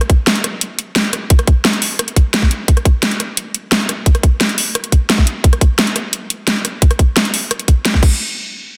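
A dubstep drum kit opens this tense, aggressive dark technical drum and bass cut at 174 BPM in a straight 4/4, its huge snare, metallic hi-hats, rim clicks and crash cymbal sitting up front. A tight, layered electronic kick joins at 0.1 s and drives alongside the kit through to the end near 8.1 s. Light reverb and a digital ambience surround the parts, and the dense, heavily limited modern master keeps the whole drum-only passage forceful and close.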